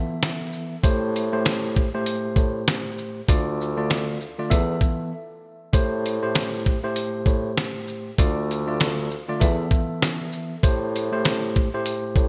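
A tine electric piano opens this gritty, dark boom-bap hip-hop excerpt, its clean tone filtered at both ends and heard up front as if through built-in speakers, voicing chords in A minor that move from Esus4 to Am7, Dm and back. At 0.2 seconds a dusty, sampler-style drum kit arrives, compressed and re-recorded in a large room, with a thumpy kick, fat snare, hi-hat and shaker pushed forward in the mix. A mellow bassoon takes the bass role from 0.8 seconds, a punchy, classical-style voice sitting low between D2 and A2. The groove runs at 98 BPM in 4/4 with a 61% swing on the sixteenths, and a brief break at 5.1 seconds interrupts the single section before the progression repeats. Light digital reverb and bright 1980s-style production frame the whole, tuned slightly sharp to A4 = 442 Hz.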